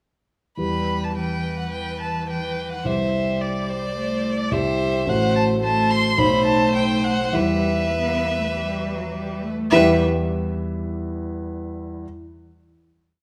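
At 0.6 s a piano quartet launches into a short, complete classical-period movement in E minor. It has an urgent, dramatic mood and moves quickly at 100-109 BPM in 4/4 with a flexible, rubato pulse. A single bowed violin carries the melody up front in a rich, smooth, even voice with vibrato, though it sits at a slight distance. A second violin, more focused in tone, weaves independent inner lines and sustained chords that follow the rhythm of the tune. The cello adds a warm, expressive lower voice with vibrato and portamento, answering at phrase ends. Beneath them, a dark, mellow grand piano with a vintage character lays down block chords with long sustain. It sounds a final chord at 9.7 s and holds it after the strings stop at 10.0 s, its resonance ringing to 12.1 s in a reverberant recital hall.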